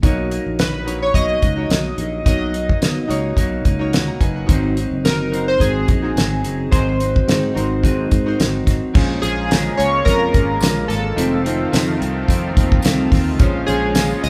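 Hazy, laid-back indie and bedroom pop at 108 BPM with a light 16th-note swing, built on glossy, warbling chorused retro synth keys, a bright, twangy clean electric guitar with warbly pitch drift, a punchy fretless electric bass and an up-front, damped 70s drum kit with a fat snare and tight kick, joined at 0.6 seconds by a detuned chorused retro synth keys melody, at 9.0 seconds by a lush, thick unison pad, and at 9.5 seconds by a very quiet, jingly tambourine, all set in a lightly reverberant live-room sound.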